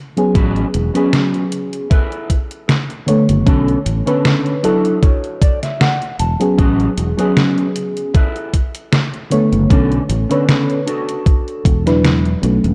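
A dark, warm production with light reverb and digital ambience frames this faded, nostalgic vaporwave fragment, cut from a longer piece, where a soft, round FM electric piano with lush chorus and analog delay warbles through lush extended chords over a fretless bass thickened by tube saturation. An overdriven, thumpy electronic kick sits up front beside a detuned 8-bit drum machine's tape-warm snare and hi-hat, all gently swung. A clean, dark electric guitar riff drifts through analog chorus and delay, with a fingered fill from 4.2 to 6.6 seconds.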